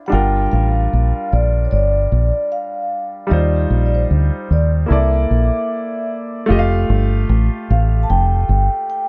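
Sweet and romantic, this short lovers rock reggae excerpt moves at a relaxed 75 BPM in 4/4 with a gentle swing on the sixteenths, set in F major. A mellow vibraphone played with soft mallets carries the melody between C5 and A5, its metallic, ringing tone shaded by a slow motor vibrato and a vintage, band-limited character, with tape echo trailing its notes. Beneath it, a clear grand piano supplies accompaniment with long sustain, sitting a little further back in the mix. The deep dub fingered electric bass is the loudest part, dark, round and punchy, foam-muted and amped, placed up front in the low register. The harmony moves from Gm7 through Eb69 and C13 before settling on Fadd9 at 6.5 seconds, where a new section begins. The sound is dry and close in the manner of a 1970s studio, touched with studio reverb, and the bass drops out at 8.7 seconds just before the piece is cut off.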